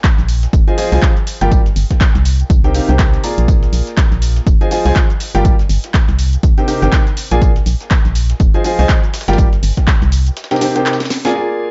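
Euphoric and feel-good, this short piano house excerpt, cut from a longer piece, rides a swung sixteenth-note groove over a dry, punchy analog kick that sits up front. A layered house kit adds handclaps, hi-hat, shaker and a cracking, overdriven snare, filtered and re-recorded in a large room, while a very quiet, gritty sampler-style snare and tambourine sit far beneath it. An organ-like FM bass with a hollow, percussive tone, fast in attack and decaying, pumps against the kick in the low register, entering at 0.2 seconds. From 0.7 seconds a clear, woody upright piano carries the riff through a loop of Fm7, Gsus4, Cm7 and Bb7, its long sustain roughened by vintage 12-bit sampler grit, touched with dub echo and pumping with the sidechain. The kick drops out at 10.0 seconds, and a short break from 10.4 seconds is closed by a drum fill, all within a dark, warm production with little reverb.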